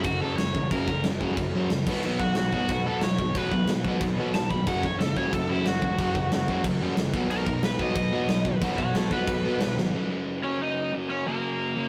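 Punk rock cut from a longer piece, energetic and rebellious at 182 BPM in F# major, where a bright, overdriven cranked stack guitar with tape echo takes a solo over F#5 and B5 power chords, backed in the background by a crunchy overdriven riff guitar, a sludgy distorted guitar and a growly fuzz bass, while an up-front big rock drum kit with a punchy kick, medium-tuned snare and crash cymbal plays a fill at 9.8 seconds before the drums, bass and crunchy guitar stop at 9.9 seconds, leaving the lead and sludgy guitars to ring on to 11.9 seconds in a rough, saturated rehearsal-room sound with light reverb.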